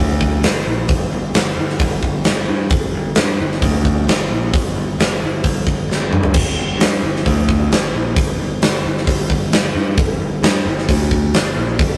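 A bright, picked electric bass opens this driving, aggressive hard rock excerpt in G minor at 132 BPM, with a huge arena drum kit coming in at 0.2 seconds to sit up front with a punchy kick, medium-tuned snare, crash, hi-hat, toms and a hall-like pumping room sound. The bass stays direct and low, grounding the straight 4/4 groove as the same passage plays twice, linked by a drum fill at 5.9 seconds. The rough rehearsal-room recording has a gritty tube saturation and light reverb.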